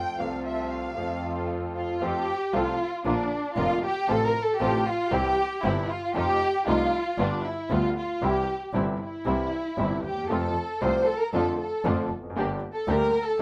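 Passionate and sultry, this tango excerpt in F major moves at 116 BPM with a rubato feel, its violin section stepping forward with expressive, up-front bowing full of vibrato and portamento across the whole 13-second span. Behind it, a grand piano accompanies with an intimate, natural tone and audible action noise, a muted string section adds veiled, dark con sordino stabs with soft attacks, and a single bowed double bass holds a smooth, boxy low end. The harmony travels from F through Bb, C and G7 before settling toward Dm/F and Gm, all in a rough home demo mix with moderate studio reverb.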